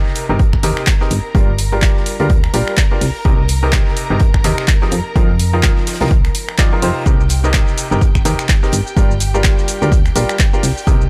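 A bright baby grand piano riff with sidechain pumping, a low-pass filter and digital delay opens this energetic, soulful piano house excerpt alongside distant, lush bowed strings that also pump as they hold Cm7, Gm7 and F7sus4 chords with vibrato and 12-bit sampler grit, before a very quiet acoustic kit of hi-hat and snare, a tape-warm drum machine of finger snaps, handclaps, hi-hat and shaker, a round, fast-attack FM bass and a punchy up-front analog kick join in quick succession within a small room and a swung 16th-note feel.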